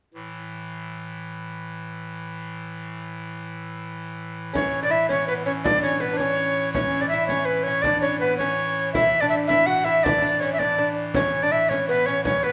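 Moving in a straight 6/8, this festive, ancient-sounding medieval dance opens with a hollow clarinet-stop organ holding a low drone alone, its baroque voicing touched with chiff. At about 4.5 seconds a delicate, gut-strung lute enters with a fingerpicked second line, and it is joined almost at once by a deep frame drum and an up-front alto recorder playing a breathy, bright, tongued melody with vibrato. The excerpt, cut from a longer piece, sits in the wet reverb of a recital hall.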